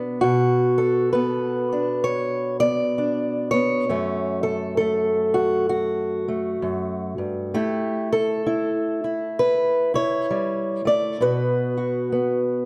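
A fingerpicked acoustic archtop guitar opens the recording alone, carrying this short folk passage from 0.0 to 12.7 seconds, cut from a longer piece. The mood is reflective and haunting, set at a slow, unhurried pace in 4/4 with lightly swung eighth notes. The guitar sits up front with a warm tone, its range reaching from low F#2 to D5, and finger squeak adds an intimate, human detail. The harmony moves from Bm to F#m, then to A, before settling on a bare B5 near 11.2 seconds. A moderate recital hall reverb lends the playing a sense of space, while the production leans dark and warm.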